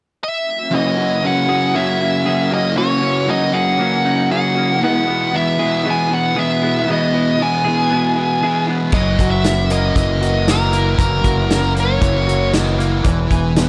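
A nasal lead guitar with a parked wah and overdrive carries the melody from 0.2 seconds in this dreamy, blissful shoegaze and dream pop rock excerpt, soon joined by twangy, compressed clean electric arpeggios in the background, a raw lo-fi garage riff with reverse reverb, and a thick, up-front fuzz guitar with chorus, before a growling fingered bass and a loose indie drum kit with dark cymbals and a tight kick enter at 8.9 seconds, set in a light, small-room ambience.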